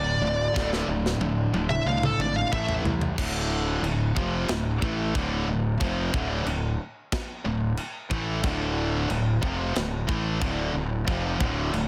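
Epic and relentless, this heavy metal excerpt moves at 91 BPM in a straight 4/4, rooted in D minor. It opens on a distorted, high-gain lead guitar melody with tape echo, sitting up front over D5 and A5 chords until it drops out at 2.7 seconds. Beneath it, three picked rhythm guitars hold down the low riff in the background: a heavy high-gain guitar, a tight distorted guitar and a raw, double-tracked garage guitar with overdrive. A growly, fuzz-laden fingered electric bass sits up front with them. A tight metal drum kit of china, crash, kick, snare and toms enters at 0.6 seconds with a fill, its cymbals bright and its snare medium-tuned. From 3.2 seconds the band settles onto a Dm chord, and the dry, dense, heavily limited mix keeps the weight pressing forward.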